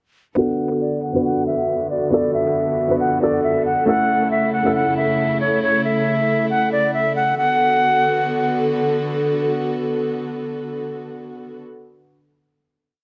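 A reedy concert flute sits up front in this short, melancholic hip hop piece, its airy, straight-toned, tongued melody repeating like a sampled loop over a half-time feel. Beneath it, a baby grand piano plays mellow, close-voiced rhythmic chords with short sustain and audible action noise, also looped, until it drops out at 5.6 s. A chamber string section holds a sustained pad throughout, bowed sul tasto with light vibrato, a soft attack and a smooth top, and rings on alone until 11.6 s. The opening is a breakdown moving from Bm7 to A, with a filter sweep running across it before the music settles on a final Bm7 chord at 7.4 s. All three parts are low-pass filtered, the flute and piano carry analog delay, and a moderate spring reverb gives the echo-heavy mix a dusky, intimate atmosphere.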